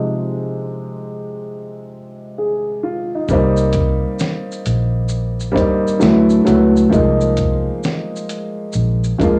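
Lo-fi hip hop at 66 BPM with a 16th-note swing, this reflective, melancholic excerpt opens with a dark, woody upright piano alone under a filter sweep, its chords passing through Ab6/C, Cm7, D6 and Bb9sus4 with cassette-tape and plate-reverb colour, before a round, foam-muted electric bass and a gritty sampler-style kit with thumpy kick, fat snare, hi-hat and shaker join at 3.3 seconds, all set in a moderate booth ambience with home-cassette haze.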